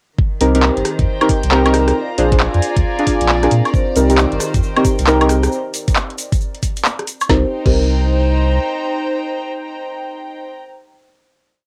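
UK garage in a bouncy, late-night two-step groove at 135 BPM in C minor, built around a knocking two-step kick, a layered kit of woody snare, claps, rims, woodblock and metallic swung hats, a thick saturated sub bass riff and up-front deep, detuned chord stabs coloured with chorus and tape echo, with the drums and stabs carrying a cassette-tape grit. Distant, floating strings shift slowly beneath, softly pumping from the sidechain, while a very quiet ethereal pad holds a high note from 1.1 to 5.5 seconds. A mellow soft-mallet vibraphone riff and a grainy hand-played shaker join at 3.7 seconds, and the drums drop away at 7.8 seconds, leaving a final Cm7 chord to ring out.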